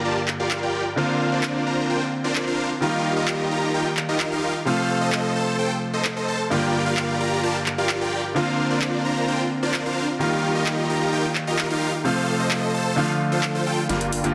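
Huge, detuned supersaw chords lead this powerful, emotional festival progressive house excerpt in G minor at 130 BPM, sitting up front through a low-pass filter and delay as they carry the riff. A bright concert grand piano with brilliant highs and a deep bass end plays accompaniment beneath them, also treated with delay. The big-room dance drum kit arrives at 0.3 seconds with layered, produced electronic sounds: a massive snare, metallic hi-hats and handclaps, re-recorded in a small room. The harmony cycles through Gm7, Bbadd9, Ebadd9 and F twice before touching Dm. At 13.9 seconds a drum fill begins, a thick, saturated sub bass enters on a low G, and a barely audible electronic riser joins in. The mix sits in a moderate digital room reverb and has a dense, heavily limited modern master.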